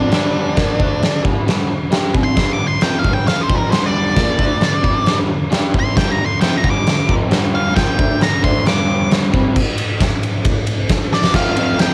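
A raw, gritty home recording on cassette, where an oversized, low-tuned drum kit sits up front with a boomy kick, fat snare, dark cymbals and a pumping big-room saturation. This garage rock excerpt in G minor runs at 134 BPM in straight 4/4, with a dark, fuzzed octave lead guitar soloing over a Gm chord until 9.6 seconds while a crunchy, double-tracked overdriven rhythm guitar drives the riff underneath. The harmony then drops away briefly before a drum fill at 11.1 seconds leads into an F chord.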